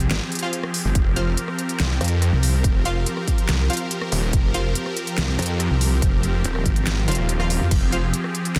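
The wobbling, overdriven wobble bass sits up front in this chaotic, menacing heavy wobble dubstep excerpt in F minor at 142 BPM in a half-time feel, beside a growling, snarling distorted saw bass that enters at 0.1 seconds. A lush supersaw pad with phaser and sidechain pumping holds sustained chords under bold, ring-modulated orchestra-hit-like stabs, while a dubstep drum kit with a deep snare and crisp hats, plus a punchy electronic kick, drives the groove. The kick drops out at 6.9 seconds as a very quiet swell enters, all in a dense, heavily limited modern master with light reverb.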